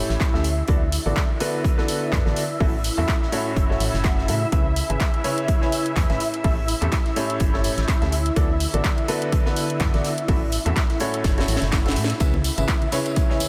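Awash in a huge, dreamy reverb, this joyful, uplifting stretch of piano house is cut from a longer piece and rides a swung 4/4 groove. A clear, woody upright piano sits up front with a riff that sounds slightly worn and detuned, its long sustain trailing into a diffuse ambient delay and pumping with the sidechain. Beneath it, a hollow, organ-like FM bass with a fast attack and dark decay holds the low end until 12.6 seconds, while a silky sawtooth string pad sustains chords with ensemble chorus and vibrato, both breathing with the same sidechain pumping. A punchy, overdriven electronic kick leads the drums, joined by a layered house kit with cracking snare, handclaps and hi-hat, and a very quiet big-room acoustic kit adds hi-hat and snare far beneath. The chords cycle through D6, A6, C#m7 and A7, and after a drum fill from 11.2 seconds, ringing tambourine and hard-handed congas enter in the background at 12.2 seconds as the harmony returns to C#m7.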